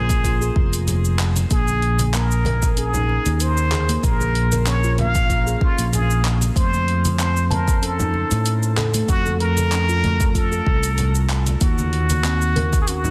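A plunger-muted trumpet opens with a jazz-style solo melody, its wah-wah tone and light vibrato trailed by delay and shimmer reverb, over round, pure steel tongue drum arpeggios played with soft rubber mallets and a growly, up-front fretless electric bass with subtle chorus and sidechain pumping. From 0.1 s a tape-warm deep house kit of cabasa, handclaps and hi-hat joins a deep, layered electronic kick and very quiet, ringing congas played with hard hands, forming a hypnotic, meditative organic downtempo groove at 95 BPM in Bb minor with a gentle swing on the 16ths. The harmony moves from Bb7(no3) to F7 at 6.6 s and Ebm at 11.6 s, all within a dense, heavily limited master in a light reverb.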